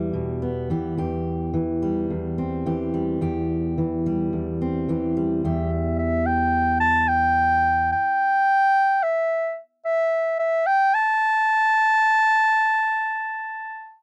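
Stirring and bittersweet, this folk excerpt in E minor at 109 BPM opens on a full-bodied, fingerpicked steel-string acoustic guitar that plays over an Em chord until 7.9 seconds, while a warm, classical-style solo clarinet enters up front at 5.4 seconds to carry the melody in its upper range through to the close, captured in a dry, close 1970s-style studio sound with light reverb.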